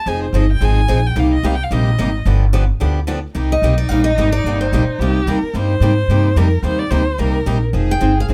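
A rich, bowed violin with vibrato opens this swinging, bittersweet jazz manouche excerpt in C minor at 219 BPM, soloing until 3.4 seconds over Fm7, Cm7 and G7 changes, while a bright, picked steel-string acoustic guitar accompanies and a woody, thumpy pizzicato upright bass sits up front, before a second picked acoustic guitar takes a brief melody at 3.5 seconds, its finger squeaks audible, in a light reverb.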